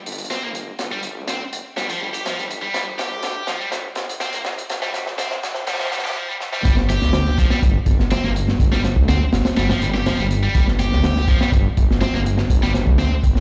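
Booming through a big sound system in a bare room with large studio reverb, this raw, energetic breakbeat cut from a longer piece sets a gritty, up-front acoustic kit with a punchy kick and high-tuned snare over a thick, beating, menacing detuned saw bass, while a bright high-gain electric guitar riff with distortion and tape echo rides on top as a drum-filled build-up gives way to the drop at 6.6 seconds.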